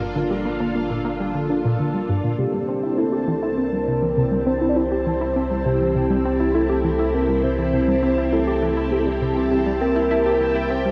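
Ambient, sequencer-driven space music at 101 BPM in a straight 4/4, expansive and cosmic, moving from G minor to C in this short cut from a longer piece. A lush, up-front string machine holds sustained chords with ensemble chorus over a tight, driving sequenced synth riff with detuned sawtooth pluck and tape echo, a round, deep analog bass and a bubbling, resonant stepped-filter texture sparkling above. At 2.4 seconds a soft, octave-layered lead enters with a dark, vibrato-tinged melody, all of it bathed in wet spring reverb and the gentle haze of a home cassette recording.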